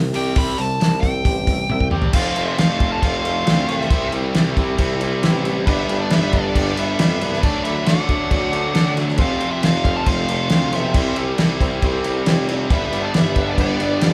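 A straight 4/4 groove comes from a thuddy, cloth-damped drum kit with a fat snare, tight kick and dark cymbals, sitting up front in this swaggering, sunny classic rock excerpt, and a drum fill at 1.7 seconds leads into a fuller section at 2.1 seconds. From the start, a raw, bright, double-tracked garage guitar plays an overdriven riff over a distant, roomy tuba with punchy, scooped bass notes, while a nasal lead guitar with a parked wah carries the melody and a very quiet, reedy electric piano shimmers with fast tremolo. At 2.1 seconds a sludgy distorted guitar joins the riff in the background, and a moment later a dark octave-fuzz lead guitar adds a second line, with the band heard live in a large studio room as the chords move through C, F, G and D.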